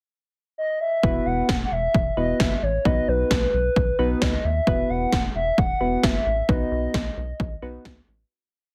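A hollow, woody clarinet-like synth lead with vibrato and chorus carries a motif-based melody from 0.6 seconds in this upbeat, wistful synth-pop piece at 132 BPM in 4/4. From 1 second, soft, round electric-piano-like keys push close-voiced chords moving between Esus2 and B, while a rubbery square bass pulses in dark eighth notes and punchy, overdriven 80s electronic pad drums with a gated snare keep a straight drum-machine beat up front. A moderate booth ambience surrounds the heavily compressed, radio-like sound, and a fade-out begins at 6.5 seconds.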